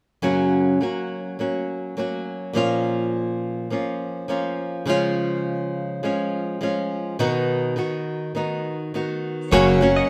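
A lightly swung 4/4 pulse at 103 BPM carries this easy-going, carefree pop piece in F# major, cut from a longer work. A fingerpicked flamenco guitar plays accompaniment alone from 0.2 seconds, up front and bright with fresh strings and an audible finger squeak, moving through F#, A#m, C# and B before the progression returns to F#. At 9.5 seconds the arrangement briefly fills out: a woody, thumpy upright bass plays pizzicato on a low F#, while a clean, direct-recorded electric guitar picks compressed, twangy, scooped arpeggios in the background. A studio string section also enters there, bowing sustained chords with vibrato and sul tasto, its sound intimate, close and smooth on top. Light reverb gives the whole a gentle sense of space.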